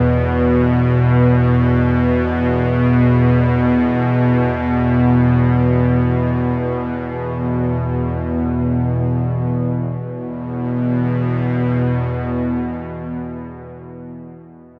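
Ambient in free time, dark and cavernous, this fragment of a longer piece is tuned slightly below standard pitch, with a high E5 sounding at the very start. A single bowed-like drone sits up front from 0.0 to 12.7 seconds, spanning E2 to B2. Its tense, string-like sawtooth tone is thickened by detuned unison voices, a noise layer and vibrato, swelling in slowly and sustaining into a long release through its own reverb. The whole is bathed in a cathedral-sized space with a 5.4-second decay and a dulled top end, and a new section begins at 9.6 seconds.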